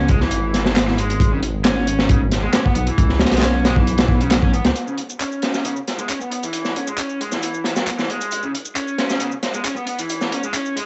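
A lo-fi, cassette-worn breakbeat excerpt with vinyl crackle and a dull top end, raw and gritty at 135 BPM in C# minor, where a crunchy, saturated breakbeat kit with a punchy kick sits up front, electronic handclaps and shaker stay low, a deep, rumbling detuned saw bass drops out after 4.7 seconds following a band accent at 4.3, and an overdriven, picked garage guitar riff runs throughout with tape echo and a filter sweep from 4.8 seconds as the harmony moves from C#m7 to C#m.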